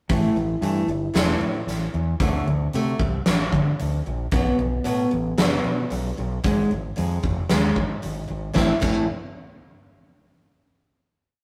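Dark and cathartic, this short quiet-loud alternative rock piece in A dorian moves at 113 BPM in a straight 4/4, with a boxy, plugged-in old ladder-braced acoustic guitar picking palm-muted eighth-note arpeggios, a growling fingered electric bass driving overdriven eighth notes, and a huge arena drum kit with a fat snare and punchy kick laying down a big half-time groove, all up front in a rough rehearsal-room recording with tube saturation and light reverb before settling on a final A minor chord at 8.6 seconds.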